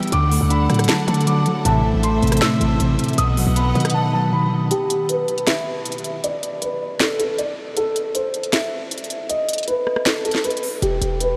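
A dark, boxy concert grand piano melody leads this eerie, menacing trap piece at 157 BPM in a half-time feel, heard together from the start with a clean, fingered electric guitar, lush bowed strings, crisp trap drums with finger snaps and a sharp snare, and a punchy 808 bass, plus a brief glossy polysynth stab at 1.7 seconds, before the guitar and strings drop out at 4.7 seconds into a filter-swept break where the bass returns at 10.8 seconds, the dreamy mix soaked in cavernous reverb.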